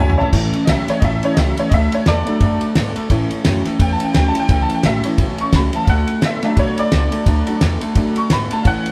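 Upbeat and retro, this rockabilly excerpt swings lightly at 173 BPM in 4/4, tuned a touch sharp with A4 at 445 Hz. A quick drum fill kicks things off before a honky-tonk piano solo takes over at 0.3 seconds and runs to the end, its detuned, jangly, vintage tone ringing out bright over a progression that moves between A and D. Underneath, an electric guitar through a small old amp plays a fingered riff with a slightly broken-up edge. A picked steel-string dreadnought adds full-bodied accompaniment in the background, with a hint of finger squeak. The pizzicato upright bass gives woody, thumpy gut-string support. The cloth-damped kit sits up front, dry and rolled-off on top, with a fat snare, tight kick and dark cymbals. The whole band plays live in one room, wrapped in moderate studio reverb.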